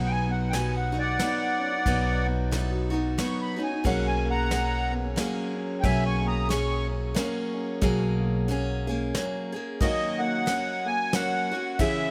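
A light reverb surrounds this short cut from a longer acoustic folk piece, with the accordion, guitar and upright bass sitting up front. At 91 BPM in a lilting 3/4 with a gentle swing, the mood is nostalgic and peaceful, moving from B to F#add9/B and later settling on D#m7. The reedy, sweet accordion carries the melody in a solo through the first 7.8 seconds, its light tremolo tuning and analog delay adding a soft shimmer. Beneath it, a bright, freshly strung steel-string acoustic guitar picks out the accompaniment, while a felt-muted upright piano adds mellow, short-sustained arpeggios further back. The pizzicato upright bass is woody and thumpy and drops out at 9.1 seconds, and a soft brush drum kit with a punchy kick, snare, hi-hat and ride keeps time underneath.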